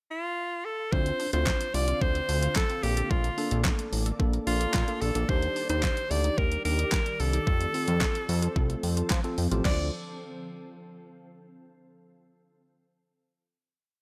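This is a short, driving and bittersweet dance-pop piece in D phrygian at 110 BPM. An edgy, forceful alto saxophone opens it with a pickup at 0.1 seconds and leads throughout with punchy, motif-based phrases shaded by vibrato. At 0.9 seconds the chorus arrives, and the overdriven pop kit locks into a four-on-the-floor beat with a knocking kick, a fat snare layered with handclaps, hi-hat and a crash. Beneath it, a thick, detuned analog bass plays a syncopated line with a filter sweep and sidechain pumping. In the background, a worn, slightly out-of-tune tine electric piano adds close-voiced syncopated stabs. A very quiet, hollow square pluck ripples through rising sixteenth-note arpeggios, and from 1.7 seconds a glassy, ethereal FM pad with ensemble chorus sustains the chords over a Dm7, Bbmaj7, Ebmaj7 and F progression. The dry, up-front mix ends on a final Dm7 chord at 9.7 seconds.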